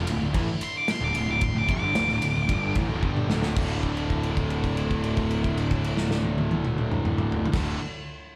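Anthemic and bittersweet, this short cut from a quiet-loud alternative rock piece heard live through a club PA pairs a growly, up-front fuzz bass and a loose indie drum kit with a tight kick and pumping room sound against a double-tracked overdriven guitar riff in the background, two very quiet bright fuzz guitars, and a faint reedy string section with gut-string tone, while a dark octave-fuzz lead guitar with tape echo sings high from 0.6 to 2.7 seconds before a drum fill leads into a long held note at 3.6 seconds.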